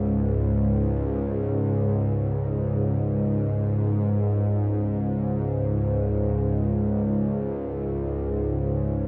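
Ambient in free time, ominous and vast, this excerpt features a single bowed-like drone sounding alone from 0.0 to 9.1 seconds in a low register, string-like and tense, with a sawtooth edge, a noise layer, slow attack, long sustain and release, vibrato, built-in reverb and tape echo, sitting up front. The whole is bathed in a huge, wet ambient reverb with an 8.8-second decay and the worn, warbling pitch drift of old cassette tape, and the music shifts into a new section at 4.1 seconds.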